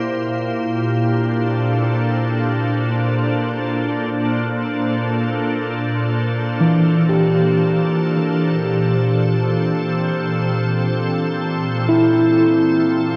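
Luminous and warm, this ambient passage floats in free time, cut from a longer piece and resting on a single Gm69/Bb chord for its full 13.2 seconds. A soft, organ-like additive pad holds sustained chords from Bb2 up to C5, its pure, calm, detuned tone shaped by a slow attack and long release, thickened with ensemble chorus and lifted by built-in and shimmer reverb so it sits bright and up front. Alongside it, a tine electric piano plays arpeggios between E3 and G4, its clean, warm tone heard through built-in speakers and trailed by analog delay. Both parts sound together from start to finish. The whole is bathed in a wet spring reverb and carries the intimate grain of a home recording on cassette.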